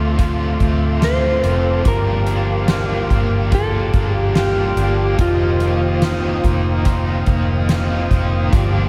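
This ethereal, melancholic dream pop excerpt opens on a Dm7 chord, with a dark, clean fingered electric guitar carrying the melody over a bright, picked overdriven guitar with tremolo, a soft, flute-like tonewheel organ holding sustained chords, and a slightly broken-up, twangy guitar fingering arpeggios. A foam-muted vintage bass, round and punchy, anchors the low end, and a soft-mallet drum kit joins at 0.2 seconds with a fat snare, boomy kick and hi-hat in a big room. The tempo is a slow 72 BPM in a straight 4/4, and the harmony moves from Dm7 to Gm7 and then to F7sus4. The organ's chorus vibrato and key click sit inside a stopped rotary speaker, and tape echo trails the melody and arpeggio guitars, while shimmer reverb haloes every part except the bass and drums. The melody guitar falls away at 6.8 seconds, leaving the accompaniment to ring out in a lush hall reverb with a long decay that soaks the whole dreamy mix.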